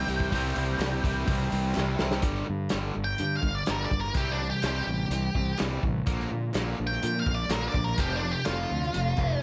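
Dry and close-sounding, this swaggering, driving classic rock excerpt moves at 125 BPM in a straight 4/4 through C, G5, Bb and F5. A dark octave-fuzz lead guitar sits up front and launches a solo at 2.2 s, over a punchy fuzz fingered electric bass and a muffled, lo-fi vintage drum kit whose fill at 1.8 s sets up the change. Behind them, bright overdriven riffs come from a distorted electric guitar, a hollow-body semi-hollow guitar and a double-tracked cranked stack guitar that stops at 2.2 s, with very quiet, crisp group handclaps.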